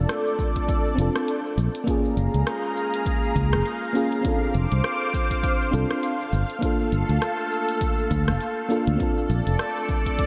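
A mellow, round FM electric piano with chorus, analog delay and shimmer reverb opens alongside a thick, detuned sawtooth unison pad with chorus and phaser and a warm, up-front fretless electric bass, setting a smooth sunset chillout groove at 101 BPM in Bb major with a swung 16th feel, as deep house hi-hat, rim click and shaker join at 0.1 s and a punchy, layered electronic kick lands at 0.4 s, while the chords move from Bbmaj7 through Gbmaj9, Dm7/F and Gm9 back to Bbmaj7 in a dreamy hall soaked in reverb.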